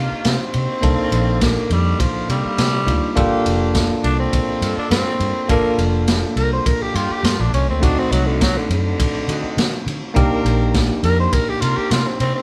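A raspy, growling tenor saxophone takes the solo up front in this brooding, soulful straight-eighth soul blues, moving over a Cm7, Gm7, D7b9 progression. A bell-like tine electric piano plays the accompaniment, and a foam-muted, round and punchy electric bass holds the low end beside a crunchy, saturated breakbeat kit of tight kick, snare and dark ride cymbal. A horn section sits in the background with sustained chords and light vibrato, and the band sounds as if it is playing live in one room with moderate studio reverb.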